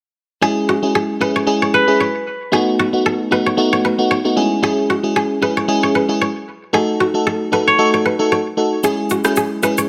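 The groove is a 4/4 afrobeats pulse with a gentle sixteenth-note swing, sultry and hypnotic in mood, in a short section cut from a longer piece. An FM electric piano layered with a soft pad carries the accompaniment from 0.4 seconds, its lush, dreamy tone shaped by a fast attack, a decaying tail, a faint noise layer and detuned chorus, sitting up front in the mix. Alongside it from the same moment, a bright, ringing kora plays a fingerpicked riff with a crisp acoustic edge, trailed by tape echo. The harmony moves from C#m to B7, returns to C#m, then passes through D#dim before settling back on C#m. Only at 8.8 seconds does an electronic shaker and rim click slip in, quiet and overdriven, adding a produced texture beneath the front-line parts. Light reverb gives the whole a modest sense of space.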